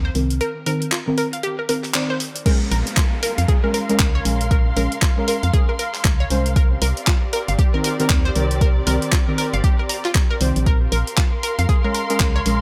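An overdriven, up-front electronic kick drops in at 2.5 seconds to drive this hypnotic, moody deep house excerpt at 117 BPM with a 16th-note swing. It joins a dark, hollow organ-like FM bass with tube saturation, soft detuned chord stabs whose filter sweep opens the first 2.5 seconds, bright ringing analog pluck arpeggios with chorus and dub echo, and an overdriven kit of handclaps, hi-hat and crash. A background downlifter and a veiled, distant muted string section arrive with the drop, while the bass, stabs, pluck and strings pump under sidechain in light digital reverb over a Cm7 to Bbm7 progression.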